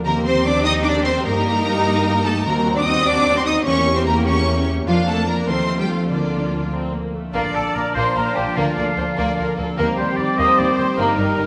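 A warm, vibrato-rich violin section carries the melody high above the orchestra in this dramatic, stormy romantic movement for symphony orchestra, which rolls forward in a straight 6/8 and is cut from a longer piece. From the start, a ringing, thumb-plucked concert harp spreads arpeggios across a broad range, while a clear, focused double bass section anchors the low end. From 0.1 seconds, a second violin section adds a lush, smooth line beneath the melody, a rich viola section fills in close-miked accompaniment, and an even-toned cello section supports the bass from the background. At 7.3 seconds the passage restates its opening idea with fresh colour: a bright, airy flute ensemble plays an expressive, tongued second line, a vintage-toned solo oboe joins on another, and a mellow, tight French horn section sustains chords. The harmony leans on tense diminished and half-diminished chords before settling back toward its home, all heard through a wet scoring stage reverb.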